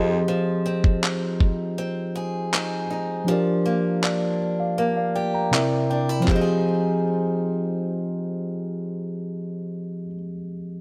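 Longing and moody, this short cut of contemporary R&B moves at a slow 80 BPM in F dorian, with a mellow, clean tine electric piano up front carrying the chords from Fm7 through Gm7/F and C7 back to Fm7, and adding a fill around 4.8 seconds. Beneath it, a woody, boxy old ladder-braced acoustic guitar with aged strings picks arpeggios through a digital delay. A gritty, compressed sampler-style soul kit of thumpy kick and handclaps sits up front from 0.8 to 6.5 seconds, all set in light reverb.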